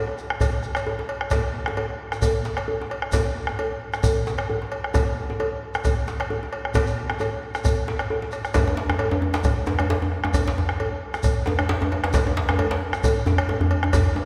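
A round, dry bombo and a tight, cracking djembe open this driving, powerful West African drum ensemble at 133 BPM with a 16th-note swing, joined almost at once by a grainy, mellow shekere and a metallic cowbell, before a deep, saturated second djembe enters up front at 8.5 seconds, the whole cut from a longer piece and heard from further back in a reverberant concert hall.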